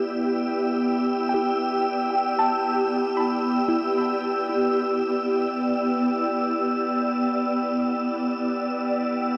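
Drifting in free time, this melancholic, serene ambient passage in E minor rests on a single Em7 chord, with an ethereal, full-bodied pad holding sustained chords up front through ensemble chorus and phaser, a soft, round pluck tracing dark arpeggios in the background with chorus and delay until 8.3 seconds, and a breathy, wind-like tuned noise texture hovering high above, all set in a vast, echoing cathedral space.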